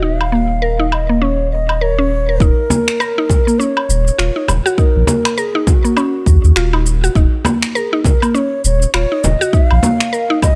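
A swung 16th-note groove at 101 BPM in 4/4 carries this meditative, hypnotic organic downtempo excerpt in Eb minor, where a hollow cedar flute with pure tone and a tongued chiff sings a delayed melody over woody FM synth-pluck arpeggios with chorus and delay, a round sub bass pumping under sidechain, and overdriven electronic woodblock, shaker and finger snaps, while a faint bronze singing bowl rings only until the deep, up-front overdriven kick arrives at 2.4 s and a large acoustic frame drum joins at 2.7 s, the mix sitting in a small room with light reverb.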